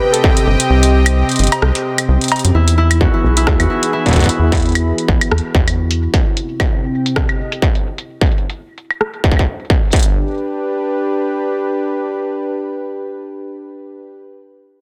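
A dense, heavily limited modern mix sits in a moderate plate reverb, giving this wistful, intricate IDM fragment a close yet airy finish. At 130 BPM in 4/4 with a light swing on the sixteenths, a booming analog drum machine supplies metallic hats, cowbell, rim click and woodblock through low-pass filtering and dub echo. A distorted electronic kick, up front, drops away for a short stretch before returning at 2.5 seconds. A rubbery square-wave bass anchors the low end, while a smooth, detuned analog pad holds sustained chords with chorus throughout, moving from C minor through E major and back before settling on G. Warbling lo-fi synth keys open with a brief, mellow melody in the background, then give way to a concert harp whose ringing arpeggios carry tape echo through the middle section. Filter sweeps run across the drums, bass and pad in that central passage, and the pad carries on alone after the rhythm section stops around 10 seconds.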